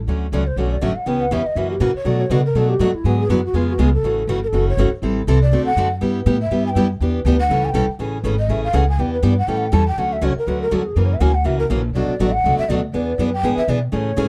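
Playful and charming, this short excerpt of acoustic string swing in the jazz manouche style moves at a brisk 243 BPM with a swung 4/4 feel, starting in D major and shifting to A major at 8.0 seconds over jazzy seventh chords. A woody, thumpy pizzicato upright bass on gut strings and a bright, picked steel-string acoustic guitar sit up front in the accompaniment, while a breathy, hollow bamboo shakuhachi carries the solo melody with vibrato and a crisp, chiffy attack, set in plate reverb. The overall production is dark and lightly reverberant.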